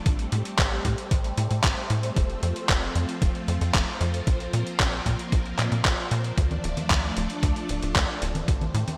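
Built on a straight 4/4 pulse at 114 BPM, this danceable, bittersweet italo disco cut in D minor pairs a thumpy electronic kick and a gritty, overdriven sampler-style kit of congas, handclaps and hi-hat with a tight, punchy sawtooth sequencer bass and a swirling, phased string machine holding sustained chords through Am7, F, Bbsus2 and Dm, all set in a lush hall reverb with bright 1980s-style digital sheen.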